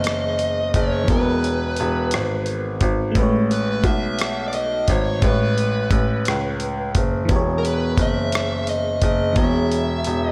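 A slow six-eight R&B groove at 58 BPM rolls through this tender, warm excerpt in E major, carried by a dusty soul sampler-style drum kit whose gritty, thumpy kick, hi-hat and rim click sit compressed and up front, while a clear baby grand piano holds down the bass with short, natural notes. Over this, a glassy FM electric piano with a bell-like attack and chorus warbles through chords moving from E6 to Amaj9 at 3.2 seconds and back at 7.3 seconds, and a dark, overdriven lead guitar picks the melody through tape echo. A lush hall reverb soaks the whole mix in a dreamy haze.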